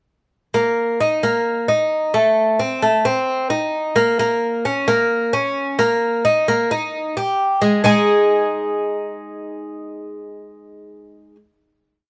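A lone acoustic Cuban tres, picked up front on bright, metallic double strings with some octave doubling, opens this warm, danceable Latin piece in Ab major at 131 BPM, spinning an arpeggiated guajeo through Eb5, Adim, Bbm and Eb before settling on a final Ab5 chord at 7.8 seconds and ending at 11.4 seconds, all captured in a dry, close 1970s-style studio sound with light reverb.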